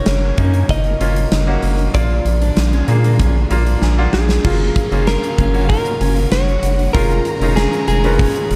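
A dark, lightly reverberant small-room production frames this bittersweet, driving piano-driven pop excerpt at 96 BPM, where a clean, compressed direct electric guitar carries the melody over brilliant grand piano accompaniment, a round analog bass with a fast filter pluck and punchy arena drums with bright cymbals sit up front, a fingerpicked steel-string acoustic guitar riff stays in the background while a very quiet string section with portamento sustains chords, and piano and drum fills arrive just before a rich, focused violin section enters as a second line at 4.4 seconds.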